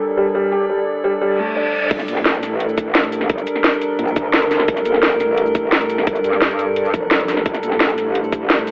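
Aggressive and mechanical, this dark technical drum and bass excerpt in G minor runs at 173 BPM. It opens on an eerie, inharmonic drone of sustained chorused chords, with a soft felt-muted upright piano playing brief delayed arpeggios, its action noise audible, as filter sweeps move over both and a reverse cymbal leads into the drop at 1.9 seconds. There a saturated, wobbling FM bass enters beneath a tight kick and a layered electronic kit with a cracking snare, metallic hats, crash and shaker that hit up front, the pumping sidechain and a telephone-like sound giving the whole passage a tense, claustrophobic edge.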